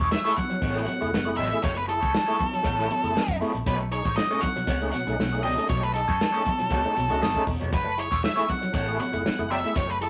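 An up-front octave-fuzz lead guitar carries the melody in this funky, sly groove, its picked, distorted tone riding over a muffled, lo-fi soul drum kit, a round, foam-muted fingered bass and a dark electric guitar at the edge of break-up, coloured by wah and tremolo. A fat tonewheel organ adds lightly overdriven stabs with key click, chorus vibrato and slow rotary speaker, while bright, high-tuned congas sit in the background over an F#m9 to B13 vamp. A brilliant, scooped trombone note surfaces distantly at 6.7 seconds during a band accent, all captured as a rough rehearsal-room take with tube saturation and moderate reverb.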